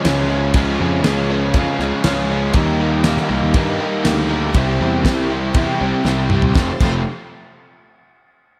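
A big arena sound wrapped in lush hall reverb frames this sunny, driving classic rock fragment at 120 BPM in 4/4, where two bright, overdriven, picked electric guitar riffs (one double-tracked, compressed and up front, the other double-tracked in the background) ride over a growly, punchy fuzz bass, a damped 70s drum kit with fat snare, tight kick and dark cymbals, a very quiet shouting tonewheel organ with key click and fast rotary speaker holding sustained chords, and a very quiet shimmering, octave-doubled twelve-string acoustic guitar, the harmony moving through Db, Eb and C before a drum fill at 6.1 seconds leads to F at 6.6 seconds.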